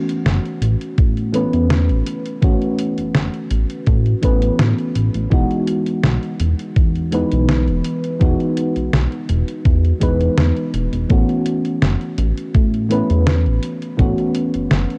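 Woozy and nostalgic, this vaporwave excerpt drifts at 83 BPM with a light swing, as a soft, round FM electric piano bathed in lush chorus and tape echo moves from A69 to Emaj9 at 5.3 seconds and back, over a glossy, detuned chorused synth bass, a thumpy electronic kick, and a detuned 8-bit drum machine's hi-hat and medium-tuned snare, all held close and dry in a dark cassette-tape production.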